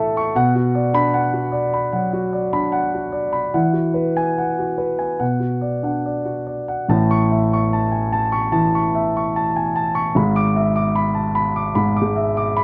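Rubato at 74 BPM in 4/4, this intimate, melancholic neoclassical minimalist piano fragment, cut from a longer piece, features a solo concert grand with a mellow, natural, up-front tone and deep bass, spanning G#1 to D6 as it moves from Bm through Eadd9 and back to Bm before turning at 6.9 seconds to A and then E7/G#, set in light reverb within a dark, warm production.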